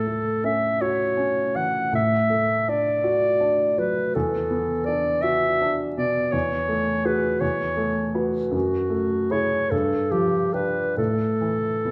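A clear, up-front clarinet sings a dreamy, luminous classical melody over a natural-sounding baby grand piano with short sustain in this impressionist fragment of a longer piece, moving in a rubato 6/8 at about 46-56 BPM in dotted quarters through chords from A6 and D/A to E9sus4, F#m9 and B9sus4/E before settling on open G5 and A5 sonorities, all bathed in a wet recital hall reverb.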